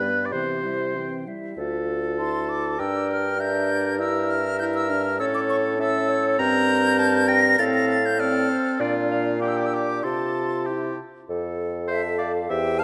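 The wind quintet sounds together from the opening, with an airy silver flute carrying a graceful, lively melody in a quick classical-period movement in two. The flute's bright tone and lifted highs are shaped by vibrato and soft attacks that make the line expressive. Beneath it the oboe sings a clear second line with light vibrato, while a close-miked clarinet and a distant, roomy French horn fill in the accompaniment. A warm bassoon sits up front with a touch of vibrato, anchoring the bass as loudly as the flute leads on top. The moderate reverb of a concert hall surrounds the ensemble, and this excerpt from a longer piece stops at 12.8 seconds.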